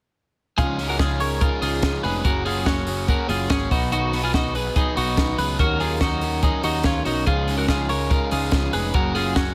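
Driven by a brisk 143 BPM straight 4/4 groove from a compact cocktail drum kit, dry and up front with a punchy kick and high-tuned snare under its hi-hat, this bright, breezy stretch of jangly indie pop, cut from a longer piece, sits in Db mixolydian and moves through Dbadd9, Gbadd9, Cb and Ebm7. A clean, compressed twelve-string electric guitar plays forward arpeggios treated with tape echo, while an overdriven electric guitar adds gritty picked accompaniment beneath it. A dark, round picked electric bass anchors the low end, and all four parts play together from 0.6 to 9.5 seconds in a light reverb.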